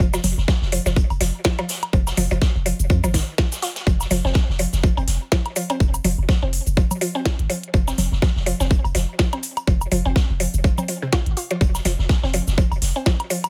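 A swung 124 BPM pulse in 4/4 drives this sparse, quirky minimal techno cut in F minor, built on a tight, overdriven electronic kick sitting up front and a deep, punchy sine sub bass with a pitch-drop attack that pumps against it. Around them a clicky electronic kit with a tiny snare and shaker, overdriven woodblock and congas with tape echo, and a distant, roomy acoustic big-band kit with a rolled-off top fill out the groove. A woody, nasal FM pluck riff with subtle chorus and tape echo bounces over the top in a dry mix cut from a longer piece.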